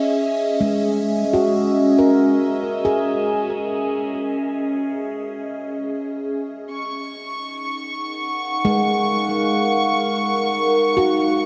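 Serene and unhurried, this ambient passage is a short cut from a longer piece in a steady 4/4. An evolving wavetable pad holds sustained chords from the start, its sine-like tone morphing slowly with a soft attack and long release, treated with phaser and its own reverb so it sits bright and up front. A handpan joins at 0.6 seconds with ringing, meditative arpeggios, its stainless-steel tone struck with sharp finger strokes and trailed by tape echo. At 6.7 seconds the harmony moves from Dbm to Ebm9, a filter sweep runs across the pad, and a chamber violin section enters with a high, bowed texture that is clear and biting yet earthy, carrying light vibrato and a smooth top. The whole passage floats in a huge, wet ambient reverb with a 7.8-second decay.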